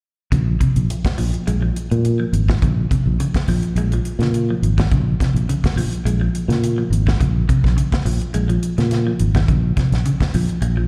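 This short afrobeat excerpt is heard as a live gig through the venue's PA, with a recital-hall reverb, though the parts themselves carry little reverb. Funky and driving, it moves at 105 BPM in a straight 4/4 in Bb minor, resting on a single Bbm7 chord. Guitar, bass and drums all come in together at 0.3 s, and the guitar carries on until 10.9 s. A tight funk drum kit sits up front, with a dry, dark sound, a rolled-off top, a medium-tuned snare and a tight kick under the hi-hat. The fingered electric bass is also up front, round and punchy, and it sounds direct and amped. Above them, a clean, picked semi-hollow electric guitar plays low arpeggios with a slapback echo and a hollow-body tone.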